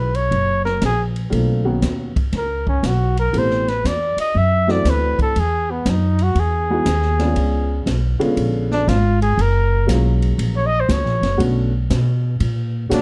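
A trumpet with light vibrato and a plate-reverb sheen leads this late-night, swinging small-group jazz piece, soloing up front across the full 13 seconds. The tune moves at 119 BPM in 4/4 with a relaxed swing feel in F# major, its harmony passing through rich chords such as Bmaj9, C#7b9 and F#maj9. Beneath it, a thumpy, woody pizzicato upright bass with steel strings sits prominently in the mix, while a clear, boxy upright piano with short sustain supplies the accompaniment. An acoustic drum kit joins at 0.1 seconds, played in a small room with dark cymbals, a medium-tuned snare and a boomy kick, and sits further back than the other parts. Light reverb and a dark, warm production give the whole passage an intimate, after-hours character, as if lifted from a longer performance.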